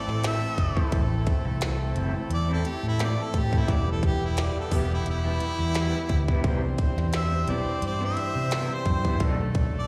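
A clear, close-miked harmonica with light vibrato takes a mournful solo from the first second over a mellow tonewheel organ turning through a slow rotary speaker and brilliant horn chords, as a round, dark fingered bass and a tight, clicky electronic drum kit sit up front, a twangy guitar through a small old amp adds slightly broken-up stabs in the background, and this soulful straight-eighth blues at 87 BPM moves from Am to Em, Cmaj7 and B7#9 in the roomy sound of a live gig heard through the venue's PA.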